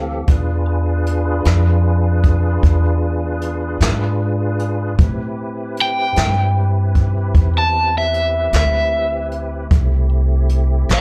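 An overdriven semi-hollow guitar carries the melody up front with a warm hollow-body tone and harmonic tremolo, over a brooding, smoky slow blues in A minor at 51 BPM in 12/8. Beneath it, a woody, dark upright bass plucks the low end, and a tonewheel organ holds clear, clean sustained chords with key click, chorus vibrato and a slow rotary speaker; a jazz brush kit with a boomy kick and medium-tuned snare joins at 0.3 s. The harmony moves from E7b9 to Am7 at 5.0 s in this cut from a longer live club performance heard through the venue's PA, with light reverb.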